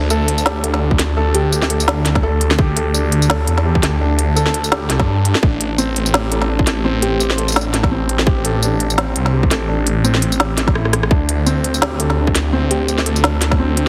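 Half-time drum and bass at 169 BPM with a swung, tense and heavy feel, this excerpt sets felt-muted upright piano arpeggios with dub echo and audible action noise over a swirling, thick phased saw bass, an organic electronic kit with woody snare, crisp hats, rim click and tambourine, and an overdriven, hard-clipped kick entering at 0.9 seconds, while a round, gentle FM synth lead with chorus and tape echo surfaces briefly in the background, a drum fill lands at 10.8 seconds, and chords move from D5 to Am and back under a heavily compressed, radio-like sound.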